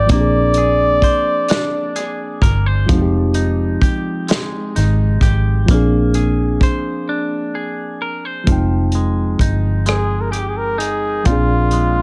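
An echo-heavy small room sound frames this excerpt of slow, yearning, sultry six-eight R&B. Up front, a warm soul drum kit with a tight kick and a rolled-off top, along with a dark, round, foam-muted fingered electric bass, carry the pulse, while a reedy, mellow electric piano heard through its built-in speakers and a bright, clean, picked semi-hollow guitar fill the middle. A vibrato-rich jazz flugelhorn, drenched in dub echo, sings the melody at the opening and returns at 9.9 seconds, after a break from 7.1 to 8.5 seconds.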